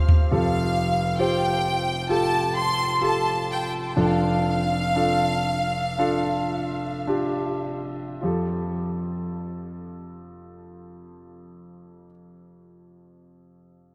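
A huge, wet ambient reverb with a 4.1-second tail soaks this dreamy pop fragment, cut from a longer piece. A warm grand piano sits up front as accompaniment, polished and present across a deep span from F1 to C5. A clear studio violin section, also up front, carries the melody high in its register, bowed smoothly with vibrato and an even ensemble tone, and trailed by a diffuse ambient delay. The mood is tender and emotional, in F major and a straight 4/4 at 50-68 BPM, and the tempo slows through the first passage as the harmony moves from Fadd9 to Dm/F, then returns to Fadd9 when the second passage begins. The violins fall away at 7.0 seconds, leaving the piano to continue alone until the close at 13.9 seconds.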